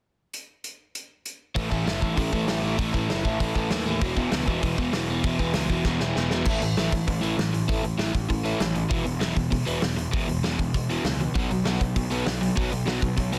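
A bright, crunchy overdriven guitar, double-tracked and up front, drives this rowdy, energetic punk rock cut from a longer piece, picking a low riff that enters at 1.5 seconds. A loose, roomy acoustic drum kit opens alone at 0.3 seconds, with dark cymbals, a medium-tuned snare and a punchy kick that sits forward despite the distant studio-room sound. A fuzzy, overdriven electric bass joins at 1.6 seconds, punchy and direct, rumbling beneath the guitar. At a racing 196 BPM in a straight 4/4, the power chords move between A5 and E5, with a drum fill at 5.9 seconds ushering in a new section that later climbs to B5. Light reverb and a dense, heavily limited modern master keep the whole performance loud and in your face.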